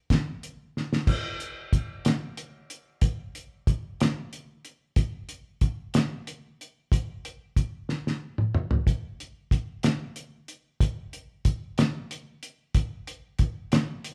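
A cloth-damped, thuddy acoustic drum kit enters at 0.1 seconds in this dark, trippy rock fragment and plays a fill at 0.7 seconds, then settles into a straight 6/8 groove at 62 BPM in dotted quarters, its fat snare, tight kick, toms, hi-hat and shadowy crash cymbals sitting up front with a rolled-off top in a moderate, large studio room, before a second fill arrives at 7.9 seconds.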